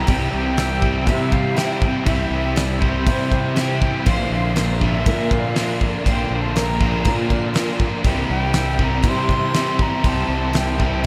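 Up front, a loose indie drum kit with a fat snare and punchy kick drives a wistful, blissful shoegaze and dream pop excerpt at 120 BPM in C mixolydian, while a breathy, close-miked concert flute carries an expressive melody through analog delay. Beneath it, a shimmering, octave-doubled twelve-string acoustic guitar picks chorused arpeggios, an overdriven semi-hollow guitar plays a riff bathed in reverse reverb, and a dark, thick fuzz guitar plays a riff of its own from the background over a fuzzy fingered electric bass. The chords move from C to Bbadd9 at 4.1 seconds and back to C at 8.0 seconds, all floating in a huge, dreamy ambient reverb.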